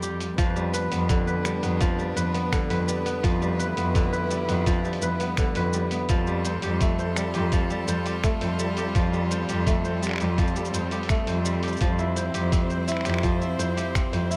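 A fingerpicked kora stands up front with crisp, ringing arpeggios, its acoustic tone roughened by vintage 12-bit sampler grit and trailed by tape echo. This folktronica excerpt has a warm, playful mood in a straight 4/4, with the harmony drifting from G/F to Fadd9 at 6.1 seconds and on to C/F at 11.8 seconds. Beneath it, a muted cello holds a low F2 bass line, dark and veiled under its mute, bowed by a single player with vibrato, soft attacks and portamento, its boxy sound placed close to the listener. Further back, a string quartet sustains expressive chamber chords, one player per line, with vibrato and sliding portamento. A compressed, thumpy electronic kick enters at 0.4 seconds to join a muffled lo-fi sampler kit of cabasa, finger snaps and hi-hat that plays from the start, both re-recorded in a large room, while light reverb softens the whole.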